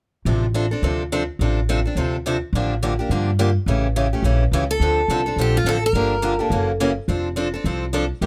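A dry, closely miked sound puts every string in sharp detail, with the instruments sitting up front. This is a short cut from a longer piece of fiery yet bittersweet acoustic string swing in the jazz manouche style, moving at a brisk 211 BPM in D minor with a light swung feel. A picked steel-string guitar, bright and boxy with fresh strings and a parlour-sized voice, drives the accompaniment throughout, while a pizzicato upright bass on gut strings adds a woody, thumpy low end. The harmony moves from Dm7/A through Gm9/A and A7, then into a second section that passes through Dm7, Gm7, F#7 and F6. A second picked guitar of the same crisp character steps in with a brief melody from 4.7 to 6.7 seconds, adding a snatch of tune over the changes.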